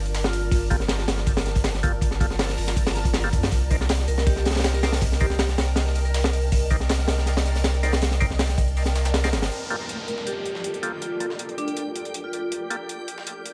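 A blurred, evolving granular cloud pad, a thick saturated sub bass and a reversed, dreamy swelling texture open this raw, nostalgic drum and bass piece, joined at once by a punchy, gritty breakbeat kit up front and an overdriven soul sampler-style kit in the background. A metallic vibraphone with dub echo and a percussive tonewheel organ with key click, slow rotary speaker and 12-bit sampler grit trace Gm9 and Cm9 harmonies under light reverb. The kick drops out at 8.8 seconds, and from 9.5 seconds the breakbeat kit and bass stop as an electronic downlifter sounds and filter sweeps move over the pad and organ, while the sampler-style hats and snare continue beneath the ringing vibraphone and the swelling texture.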